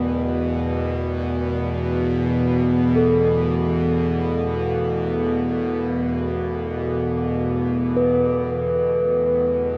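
From the first moment, a low, eerie, inharmonic drone with a slow attack and long release sits up front, its sawtooth and ring-modulated tone thickened by chorus and its own reverb, while a bronze singing bowl struck with a suede striker rings above it with slow beating. This haunting, spacious piece of free-time world meditation music runs for 9.8 seconds, cut from a longer work. A huge, wet ambient reverb and the soft grain of cassette tape surround both parts.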